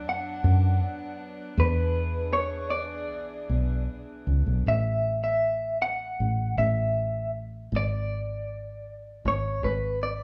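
A moderate stone-room reverb and small-room ambience surround this live, single-room take of an acoustic folk-pop ballad in A major, moving at 79 BPM in a straight 4/4 with a nostalgic, hopeful mood, cut from a longer piece. Up front, an electric guitar through a small old amp carries the melody between B4 and F#5, its picked tone slightly broken-up and compressed with a tremolo effect, while a fingered electric bass sits just as close with a direct, amped, foam-muted sound. Beneath them, a chamber string section bowed sul tasto holds pure, floating chords over Bm and E7 until it stops at 4.6 seconds, and the guitar and bass continue through A5 and a spare G# chord to the end at 10.2 seconds.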